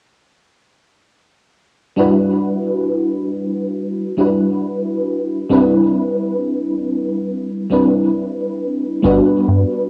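A slow, straight 4/4 pulse carries this short vaporwave fragment, cut from a longer piece, with a nostalgic, faded mood. A mellow FM electric piano holds the accompaniment from 2.0 seconds, its round, warbling tone dressed in ensemble chorus, cassette tape character and tape echo, moving through Em9 and Cmaj9 before settling on Gmaj7. Near the close, at 9.0 seconds, a chorused synth bass appears briefly, glossy and nasal with a plucky filter edge, sitting up front alongside the keys. The home cassette recording lends a modest booth ambience that keeps the sound intimate and softly worn.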